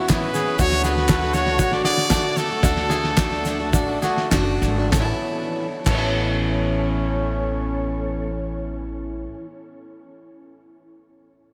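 A bright, softly attacked trumpet carries the melody until 4.3 s in this hopeful, anthemic indie folk fragment, over a vibrato-laden trombone second line, a picked steel-string acoustic guitar with audible finger squeak, twangy fingerpicked banjo arpeggios, very quiet flute-like organ chords through a slow rotary speaker, and a woody, thumpy pizzicato upright bass up front, while a muffled, gritty cloth-damped drum kit, a grainy egg shaker and faint crisp group handclaps drop out at 6.0 s, the pace slowing early on and the whole mix soaked in dreamy, cavernous reverb.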